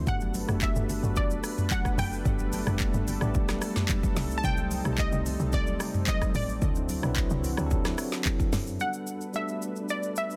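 A straight 4/4 groove at 110 BPM drives this relaxed amapiano excerpt in G major, built on an electronic afro-pop drum kit sitting up front with a deep kick, woody snare, crisp hats, handclaps, rim clicks, shaker and toms. Beneath it, a tight, punchy log drum bass with a fast attack and a noisy, percussive FM edge carries the low end until 8.8 s, while ringing acoustic congas played with hard hands sit close and dry in the background. A clean tine electric piano, heard as if through built-in speakers, supplies the accompaniment, and a lush, thick unison pad of detuned sawtooth voices warbles with vintage chorus under slow-attack sustained chords. On top, an analog pluck carries the melody between D5 and A5, round and bright with an evolving filter sweep, chorus and delay. The harmony moves through Gmaj9, Cm6 and D9 before returning to Gmaj9 at 8.8 s, where a new section begins, and the dense, heavily limited mix keeps reverb to a minimum.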